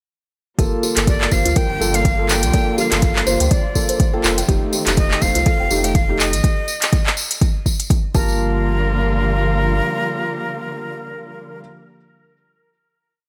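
A warm small-room sound frames this hypnotic afro house piece at 123 BPM in G minor, where a deep overdriven electronic kick, smooth programmed hats and claps, and jingly tambourine drive a round sub bass riff that pumps alongside sustained string chords, felt-muted piano stabs and a woody kalimba arpeggio, while a breathy, bright jazz flute carries a hook-based melody from 1.1 seconds through to the end, as the groove gives way to a final hit at 8.4 seconds.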